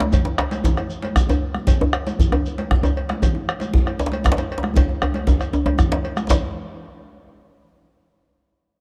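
A deep, dark bombo sits up front in this driving, powerful West African drum ensemble piece at 156 BPM in 12/8, alongside a close, warm djembe, a second, band-limited vintage djembe in the background, bright, high-tuned congas struck with hard hands in a distant large room, a metallic cowbell and a grainy, mellow shekere, all in a dark production with light reverb, with a drum fill from 4.8 to 6.3 seconds in this cut from a longer piece.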